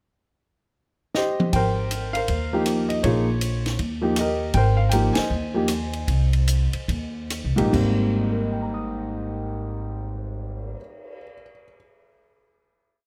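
An intimate concert grand piano with audible action noise leads this short, playful and relaxed swinging jazz trio piece, voicing motif-based call phrases over syncopated quartal comping as a dry cocktail kit with dark cymbals, a high-tuned snare and a punchy kick opens with a brief fill at 1.1 seconds and rides with sticks, and a woody pizzicato upright bass settles into a two-feel, before the trio slows from 4.5 seconds, hits a band accent and rests on a final chord at 7.7 seconds under light reverb.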